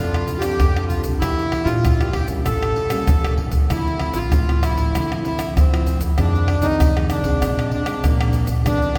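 Festive and playful, this short fragment of samba and choro sets a reedy accordion melody with slow beating up front over thumb-plucked classical nylon-string guitar, a woody, thumpy pizzicato upright bass in the background, and close, dry egg shaker, pandeiro, tamborim and tight surdo, all ringing in a wet cathedral reverb as the harmony moves from F6 through Em7b5, A7b9 and Dm9 to Fm7 and Bb9.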